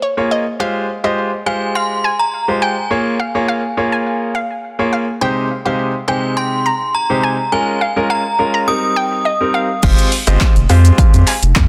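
A hollow, bouncy square-wave pluck carries the melody from the opening moment of this driving, bittersweet dance-pop excerpt in F minor at 104 BPM. It is colored by chorus, tape echo and sidechain pumping, and a bright, polished concert grand piano pumps beneath it in accompaniment. At 1.5 seconds an inharmonic FM synth chime joins high above with a ringing second melody, thickened by ensemble chorus and tape echo, while the harmony moves through Fmadd9, Bbm7, Abmaj7/C, Db6 and Cm7, tuned to A4 = 438 Hz. The drop hits at 9.8 seconds, where a deep, thick saturated sub bass and a punchy, overdriven analog drum machine with kick, snare, hi-hat, shaker, handclaps and crash cymbal arrive up front. From 10.4 seconds a very quiet, vintage-sounding group handclap adds a human touch under light reverb, all within a dense, heavily limited modern master.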